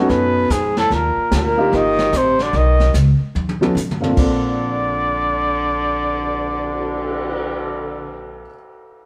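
A swung 4/4 at 147 BPM drives this sophisticated, playful small-group jazz excerpt in Bb major, moving from B7 to Ebmaj7 and settling on Bbmaj9 at 4.2 seconds. A breathy, close-miked trumpet with scooped notes and vibrato carries the melody up front, shadowed by a mellow, subtoned baritone saxophone line, while a dusky grand piano comps and a woody, growly pizzicato upright bass anchors the bottom. A brushed kit with a high-tuned snare, boomy kick and dark cymbals plays a fill from 3.4 to 4.2 seconds and stops at 7.4 seconds, all in a moderate stone-room reverb that suggests a band playing live together.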